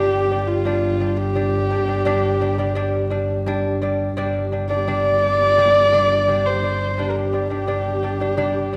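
A wet recital-hall reverb surrounds this brief, solemn and windswept passage of Mongolian traditional music, cut from a longer piece in a straight 4/4. Up front, a husky horsehead fiddle carries the melody with light vibrato, portamento, an airy bow and a slapback echo, while a mellow, fingerpicked lute with double gut strings plays delicate arpeggios beneath it. A rich double bass, bowed sul tasto with a soft attack, holds a low G drone across the full 8.8 seconds.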